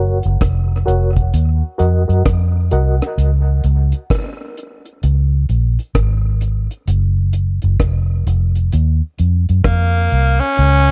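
Electric piano stabs and a vintage muted fingered electric bass open this hazy, laid-back dub reggae excerpt at 65 BPM in 4/4, with a 16th-note swing. The reedy, barky piano, lightly overdriven with fast tremolo, a low-pass filter and tape echo, sounds through its built-in speakers and drops out by 3.0 seconds. The foam-muted bass sits up front with a dark, round, amped tone, carrying the low end under chords that move from Gb to Ebm and Db5, pass through a chordless stretch, then land on Eb5. A deep reggae drum kit enters almost immediately, its dry, smooth hi-hat, tight kick and rim click kept up front with a rolled-off top. Near the end, at 9.6 seconds, a raspy tenor saxophone comes in with a gritty, forceful, punchy solo line, colored by vibrato and tape echo. Studio reverb lends the whole mix a spacious haze.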